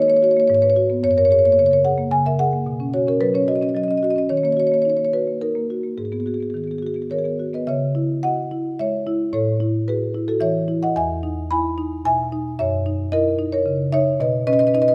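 Contemporary classical music for solo marimba: a hypnotic, flowing passage in 3/4 with a rubato feel, cut from a longer piece. Played with soft mallets on padauk bars, the marimba sounds woody, round and mellow, sitting up front and ranging from E2 to B5 through rich seventh and added-note chords. At 7.7 s the music moves into a second section with a new tonal center, all carried by a moderate recital hall reverb.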